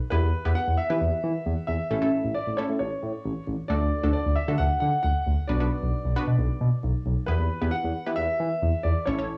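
Recorded at home on cassette in a small room with moderate reverb, this bright, upbeat synth-pop passage at 134 BPM, cut from a longer piece, sets an intimate, up-front grand piano melody with audible action noise and tape echo over a lush, detuned unison pluck with a filter sweep, both carrying a cassette-tape tint, while a smooth, nasal synth bass with vibrato anchors a progression through Em, A, D and Bm that returns to Em at 7.3 seconds.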